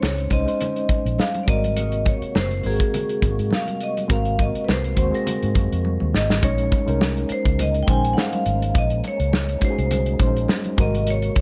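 Cinematic and smooth, this excerpt of lush 1970s-style soul moves at 103 BPM in Bb minor with a light sixteenth-note swing, as a bright, ringing vibraphone played with hard mallets carries the melody over a reedy electric piano with fast tremolo, shifting between Bbm11 and Ab9 chords. Underneath, a dark, round, foam-muted fingered electric bass and an up-front soul drum kit with a tight kick and rolled-off top hold the groove, joined by very quiet, thin-skinned congas. A fat, lightly overdriven tonewheel organ with slow rotary speaker and chorus vibrato enters in the background at 1.8 seconds, and a drum fill at 5.8 seconds leads into the second section at 6.4 seconds.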